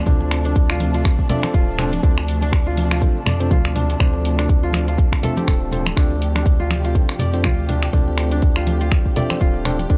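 A punchy, up-front electronic kick drives this hypnotic afro house passage, cut from a longer piece and resting on a single Dm7 chord, with a house kit adding finger snaps and bright hats, hard-handed congas and a grainy cabasa sitting in the background. Over a round, deep analog bass, a crisp fingerpicked kora plays ringing arpeggios and a clean tine electric piano adds stabs, both trailed by tape echo, while a distant, dark chamber string section holds bowed chords with vibrato. Sidechain pumping runs through the strings, kora, bass and piano, and the recording has a dry, gritty cassette-tape character in a small room.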